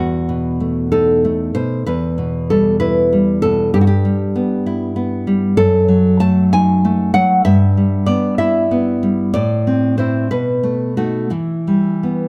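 Close, detailed miking with light reverb puts a full-bodied, up-front nylon-string guitar in the foreground of this wistful, intimate romantic excerpt for solo classical guitar in E minor, its fingerpicked lines and audible finger squeaks moving with rubato at 64 BPM in 6/8 across a range from E2 to A5 through chords that lean on B7 and Em before closing on Em at 11.3 seconds.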